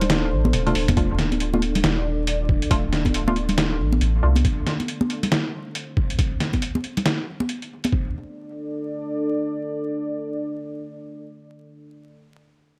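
Dark and heavy, this deep dubstep excerpt moves at 138 BPM with a swung, half-time 4/4 feel. It opens on a moody, full-bodied analog pad with chorus whose filter sweeps from 1.0 to 7.9 seconds. Alongside it are a round, soft sub bass, close, dry bongos and congas with dub echo, and a muffled, overdriven sampler-style kit of hi-hat, medium-tuned snare and toms that plays a fill while the kick drops out. A muted, detuned chord stab that decays through chorus and echo enters at 0.7 seconds, and a thumpy, pitched-down electronic kick follows at 1.0 seconds. After the bass and stab stop at 4.4 seconds and the drums fall away near 8.0 seconds, the pad sustains alone over vinyl crackle and light digital ambience.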